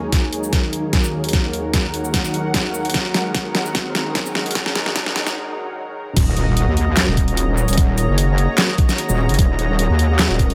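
Chaotic and heavy, this half-time wobble dubstep excerpt in Eb minor at 149 BPM opens on a lush, airy sawtooth unison pad and a blurred, evolving granular cloud pad, both pumping with sidechain, while an overdriven kit of deep snare, bright hi-hats, handclaps, shaker and crash cymbal rides over a knocking electronic kick through a filter-swept build-up with a drum fill, a very quiet riser and impact, and a brief break at 5.4 s, before the drop at 6.2 s brings in an up-front, saturated, detuned square-and-sine wobble bass with chorus, the mix carrying a light reverb.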